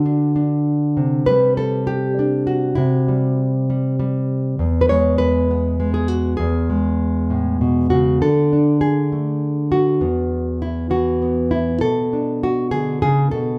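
A full-bodied, fingerpicked nylon-string guitar with a deep classical tone sits up front in this nostalgic, peaceful solo folk passage at 66 BPM in a straight 6/8, moving from Cadd9 and E to D5, Esus2 and Bm7 over about 13.6 seconds, captured live in a large studio with a moderate reverb that lends the playing an airy bloom.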